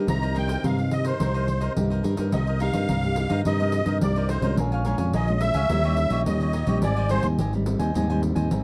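A dry, close 1970s-style studio sound frames this bittersweet, nostalgic samba-choro in C minor at 107 BPM, where a reedy, shimmering musette accordion carries the melody up front and takes a solo from 2.3 seconds, over crisp picked cavaquinho, a fingerpicked classical nylon-string guitar set in the background, a direct, up-front fingered electric bass and jingly soft-handed pandeiro, as the chords move from Cm7 through Bbm7 and Eb7b9 to Abmaj7.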